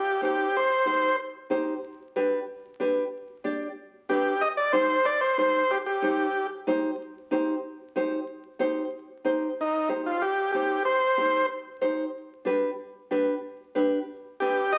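Latin music in a passionate, driving mood, this short cut from a longer piece moves at a brisk, straight pulse in four. A vintage combo organ carries the melody with a reedy, clean tone touched by light vibrato, sounding in phrases that come and go, first at 0.0 seconds and again around 4.1 and 9.6 seconds. Beneath it, a fingerpicked nylon-string guitar plays classical-style accompaniment from 0.2 to 14.6 seconds, its acoustic tone mellow and close. Both parts sit up front, and the harmony sways between C minor and G, giving the passage a dark, insistent pull. A wet studio reverb opens up the space, while the crackle of a very old 78 rpm record lends the whole sound an aged, dusty patina.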